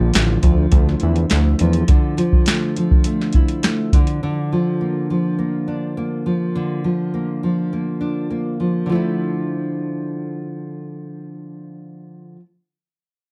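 A fingerpicked, full-bodied nylon-string guitar with subtle chorus and vibrato carries this mellow, wistful indie bedroom-pop excerpt in D minor at 103 BPM, moving from Dmadd9 to Bb/D and back, while a fat, detuned sawtooth analog bass with a filter sweep sounds only until 1.8 seconds and a soft vintage rhythm box of deep kick, crisp snare and metallic hats plays until 4.2 seconds, all set in light reverb with a dark production.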